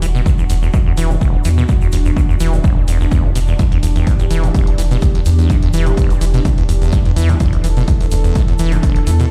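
A lightly swung 4/4 groove drives this raw, trippy acid house excerpt. A punchy analog kick arrives up front at 0.3 s beside a deep, round bass, and a squelchy, resonant sawtooth acid riff with filter sweep and tape echo pumps with sidechain. A mellow, detuned pad holds sustained chords through chorus and phaser, while a tape-warm hi-hat and a grainy, bright shaker sit in the background of a big, bare-room reverb.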